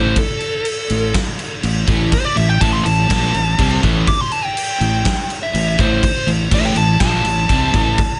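Lightly reverberant and rolled off in the highs, this short cut from a longer hard rock piece in A minor moves at 123 BPM with a menacing, aggressive edge over a single A minor chord. A dark, smooth lead guitar with overdrive and tape echo carries a solo from the start, above a picked, double-tracked semi-hollow guitar riff tucked in the background and a growly, punchy fuzz bass played with the fingers. A big, natural-sounding acoustic kit sits up front with bright cymbals and a tight kick from 0.2 seconds, and a crunchy, very quiet second overdriven guitar adds its own riff from 2.4 seconds.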